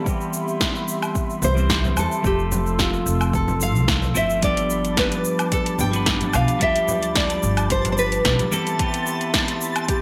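Sunset chillout at 110 BPM with a light swing, relaxed and smooth, built on Cmaj7, Fmaj7 and G7 chords under a bright, 1980s-style digital sheen with a moderate plate reverb. A picked, twangy clean electric guitar with a filter sweep and digital delay sits beside a breathy, detuned pad, while a punchy deep house kit with metallic hats and a gated reverb rides up front over an overdriven deep electronic kick. From 1.4 seconds a fingerpicked nylon-string guitar carries the melody over a woody, growly pizzicato upright bass and very quiet ringing congas, and from 4.9 seconds a twinkling granular texture with an octave-up shimmer glints in the background.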